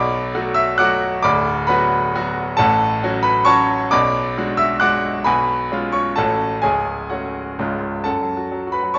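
This is a classical virtuoso piano study in F# minor, cut from a longer piece and lasting about 9 seconds, with a passionate, stormy mood. The tempo sits around 134 BPM in 3/4, played with a flexible rubato feel. A clear concert grand piano plays solo throughout, sitting up front with a natural tone and deep bass, spanning a range from C#1 up to F#6. The harmony moves from Bm7 through G#m7b5/B and C#7/B before settling through a C# chord onto F#m at 8.1 seconds. The piano rings in a reverberant recital hall with a 1.6-second decay, and the top end is cut off above 7.5 kHz.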